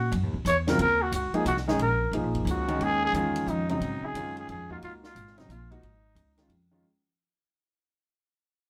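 A raspy, growling trumpet with vibrato and scooped notes leads this spiritual, searching modal jazz excerpt in a swinging 3/4 at 179 BPM, over a woody, thumpy upright bass, a dry cocktail drum kit with dark cymbals and a high-tuned snare, and an intimate grand piano with audible action noise entering at 0.7 seconds, all moving from Ebm7 to Dbadd9/Eb in a moderate club reverb as the whole passage fades out.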